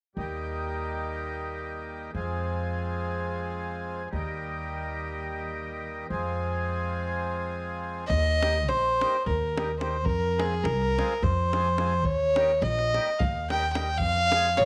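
This Balkan wedding-band folk piece, taken from a longer recording, is exuberant and festive, moving briskly at 213 BPM in eighths across a straight 7/8 in Eb major. A reedy, full accordion carries the accompaniment from the start, alongside a pizzicato upright bass with steel strings that sits up front, woody and thumpy. The harmony rocks steadily between Eb and Fm. At 8.1 seconds the music moves into a second section. There a clear, biting fiddle takes the melody up front, with light vibrato and an airy bow, and a deep, dry davul joins in the background. The whole band plays in a studio room with a wet spring reverb.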